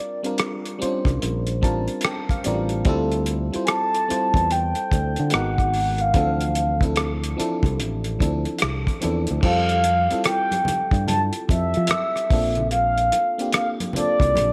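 R&B and neo-soul at a relaxed 73 BPM in D minor, this introspective, late-night passage, cut from a longer piece, rides a swung sixteenth feel with light small-room reverb. A round, horn-like sawtooth synth lead with soft attack, vibrato and chorus carries the melody up front over a glassy, bell-like FM electric piano that plays a fill from 1.2 to 2.9 seconds, while a cloth-damped, thuddy drum kit with dark cymbals and a tight kick and a growly, punchy fingered electric bass also sit up front. Ringing congas enter in the background at 9.8 seconds as the harmony moves through Dm11, Dm9, Fmaj9 and Bbmaj9.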